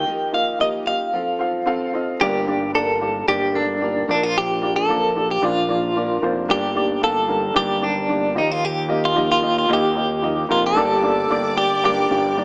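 Earnest and bittersweet, this excerpt of a straight-feel 4/4 pop piece in G minor at 112 BPM opens with a break, while a bright, twangy, up-front clean electric guitar carries the melody through tremolo throughout, over woody, worn upright piano chords, a fingerpicked steel-string acoustic guitar riff sitting in the background and a fat, detuned sawtooth analog bass, until a lush bowed violin section enters with tape echo at 10.8 s, all heard through a moderate echo chamber reverb and a small-speaker sound.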